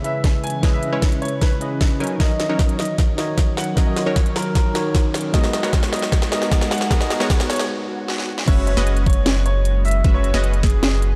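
A dark production with light reverb and a digital ambience frames this bittersweet, lush future bass excerpt at 153 BPM in 4/4, felt in half-time. A brilliant, open baby grand piano carries the melody with sidechain pumping and dub echo, over a clean tine electric piano played through a combo amp with digital delay, while a very quiet, ethereal pad with a slow attack and ensemble chorus holds chords. A detuned supersaw stab riff with a low-pass filter sits in the background. An overdriven, knocking electronic kick up front drives the build-up alongside a trap kit with a sharp snare and crisp hats in studio reverb. A very quiet electronic riser and swell sounds as the harmony moves through C#m9, D#m7 and G#m9 toward a short break at 7.7 s. At the drop at 8.5 s the chord shifts to F#9sus4, a thick, saturated sine sub bass arrives up front, and very quiet ringing unison pluck arpeggios enter.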